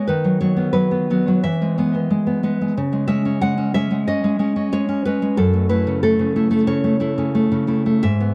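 Rubato at about 91 BPM in 4/4, this sunny, tender romantic excerpt for solo classical guitar features a full-bodied, fingerpicked nylon-string guitar with finger squeak and tape echo, played up front across F#2 to F#5 through B/D#, E, C#5 and F#m7 in a dry, close 1970s-style studio sound with light reverb.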